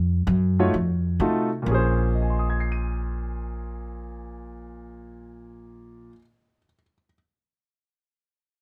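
A swung 4/4 pulse at 129 BPM drives this short cut from a longer big band swing piece in Bb minor, with the eighth notes leaning into a lilting triple feel. The mood is sultry and brassy, though the sound here rests on a small rhythm section. An acoustic upright bass opens at 0.0 seconds, its plucked steel strings giving a woody, warm tone that sits up front as it anchors the low end. A warm baby grand piano joins at 0.6 seconds, its natural, short-sustained voicings ranging from the low-middle register up into high notes as accompaniment. The harmony moves from a tense F7b9 to a dusky Bbm9 at 1.7 seconds. Close, detailed microphones and very little reverb keep both instruments intimate and present, with the bass stopping at 6.1 seconds and the piano continuing to 7.1 seconds.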